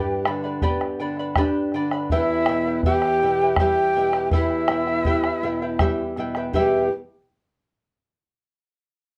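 Melancholic and wistful, this brief Andean folk excerpt in 3/4 at 81 BPM sets a mellow, airy cane quena with vibrato up front on the melody over a breathy, soft-attack wooden pan flute carrying a second line, while a shimmering fingerpicked charango with double strings and a bright classical nylon-string guitar accompany a G to E minor change, and a round bombo enters at 0.3 s, all within moderate studio reverb.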